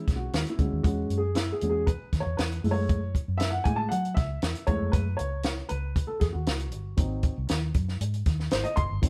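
A joyful, danceable slice of uptempo 1960s-style soul moves at 117 BPM in a straight 4/4, cut from a longer piece and lasting about 9 seconds. A dark upright piano carries the spotlight with a solo from the start, its woody, mellow tone sitting up front with audible action noise and short sustain that give it an intimate, vintage character. Underneath, a vintage fingered electric bass, foam-muted and amped, supplies a round, dusky low end. A compact cocktail drum kit joins at 0.1 seconds with hi-hat, a tight kick and a high-tuned snare, sounding dry, natural and close. The harmony moves from E6 to F#m7 at 2.6 seconds and lands on G#7 at 7.0 seconds, all captured as a band playing live in one room with light reverb.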